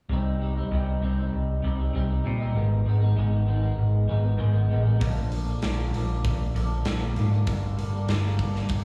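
Quiet-loud alternative rock with a brooding, cathartic mood, cut from a longer piece and heard as a live gig through the venue's PA, with recital hall reverb and small room ambience. A twangy, slightly broken-up electric guitar through a small old amp plays arpeggios with analog chorus and slapback echo, over a growly, overdriven picked bass sitting up front, as the chords move through Cm, Abm, Bb and Gm. At 5.0 seconds a big rock drum kit enters with a punchy kick, a medium-tuned snare and hi-hat, its sound dark and rolled-off on top.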